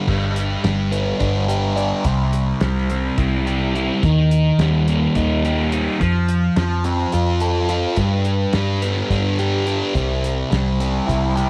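Hazy and hypnotic, this short cut from a longer psychedelic rock piece rides an odd-metered 7/8 groove with a straight feel. A double-tracked fuzz guitar sits up front, its distorted, phaser-coated riff opening the clip alone at 0.0 seconds before the others join. A vintage muted electric bass, picked and foam-muted, adds a round, amped low end beneath it. The cloth-damped drum kit brings a fat snare, tight kick, dark cymbals and a rolled-off top, sounding dry and thuddy. The harmony moves through G, C, E-flat and F before circling back to G and C. Light reverb and a small room ambience frame the trio.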